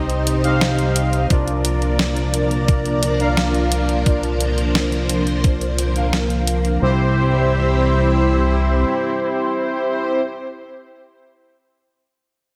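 Bold, brassy analog synth stabs with chorus, vibrato and digital delay lead this nocturnal, moody synthwave excerpt at 87 BPM. They sit over a lush vintage string machine with ensemble chorus and sidechain pumping, and a fat, saturated, detuned bass that pumps in the same way while a filter sweeps across it until 6.8 seconds. A thumpy electronic kick joins at 1.3 seconds, and a detuned 8-bit drum machine supplies hi-hat and a medium-tuned snare until the harmony moves from Cm through Bb/C to C major at 6.8 seconds, all bathed in a moderate hall reverb.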